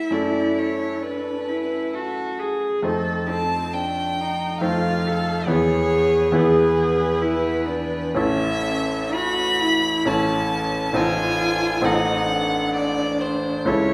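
The beats stretch and give in a free rubato at 66 BPM in 3/4, setting the unhurried pace of this slow, lyrical romantic movement for piano quartet in A major, tuned slightly low to A4 = 436 Hz. A single bowed violin carries the melody between A4 and B5, its tone focused, with vibrato and a smooth top, placed up front. Beneath it, one bowed cello sings a second line from C4 to A4, even and velvety with vibrato, sitting at a distance. The concert grand provides the accompaniment across a span from A1 to C5, brilliant and present with a deep bass. The harmony moves through F#m7, F7, E and A before reaching Adim7 at 11.0 s, all heard in a resonant recital hall with a reverb of about 1.5 seconds, in this fragment taken from a longer piece.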